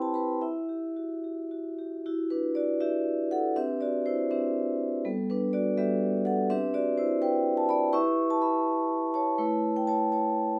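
A ringing, metallic vibraphone played with medium mallets and its motor off sits up front through close, detailed microphones and light reverb in this flowing, hypnotic contemporary classical solo, which moves in a rubato 6/8 through rich chords such as Em9, Cmaj9 and G69 across a short span cut from a longer piece.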